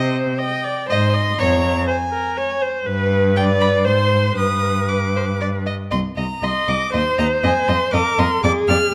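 A smooth, even first violin carries the melody high above the ensemble from 0.4 s, its vibrato singing through this stormy, dramatic string quartet passage from a quick classical-period movement in C minor, moving at 120 BPM in 3/4. Beneath it, a dark second violin and an up-front viola play expressive lines with vibrato and portamento, while a rich, close cello anchors the bass. A moderate recital-hall reverb gives the quartet a natural sense of space as the harmony presses from C minor through Ab, G and F toward a tense diminished chord near the close of this excerpt.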